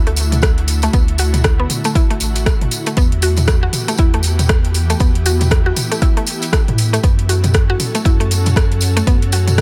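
A swung afro house groove in four drives this short excerpt, built on a deep, up-front electronic kick that arrives at 0.4 seconds and a layered deep house kit of metallic hi-hats, rim clicks and toms given a gritty overdrive. A close, dry acoustic tambourine adds a jingly shimmer on top. Beneath it, a round sine sub bass holds the low end with fast attack and mellow sustain, pumping against the kick. A woody, mallet-like FM pluck spins bright arpeggios through chorus, phaser and dub echo, while a vintage, detuned pad of sawtooth and triangle layers breathes in slowly with a warbling ensemble chorus and its own reverb. The harmony moves from D to Em at 3.0 seconds and on to F#m at 7.0 seconds, giving the dry, close-sounding mix a warm, spiritual mood.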